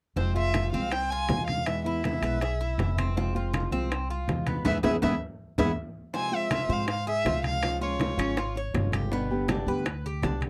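A bowed violin carries the melody up front, its close, expressive tone shaded with vibrato, portamento and a soft attack, singing from 0.2 s until it falls away at 8.5 s. Beneath it sits a Cuban son and guajira groove at 161 BPM in straight 4/4, sultry and nostalgic in F harmonic minor, moving from Fm through E, Db and G. A fingerpicked nylon-string guitar gives small, warm accompaniment while the Cuban tres picks metallic arpeggios on its doubled strings, and a growly, woody upright bass thumps pizzicato lines up front. Low-tuned, round bongos and thick-skinned congas played with soft hands sit in the background, with the congas sounding distant in a large room, while ringing metal-shell timbales join at 0.5 s. A drum fill and band accent from 4.7 to 6.1 s mark the turn into a new section, all captured in a dry, close 1970s-style studio sound with light reverb, cut from a longer piece.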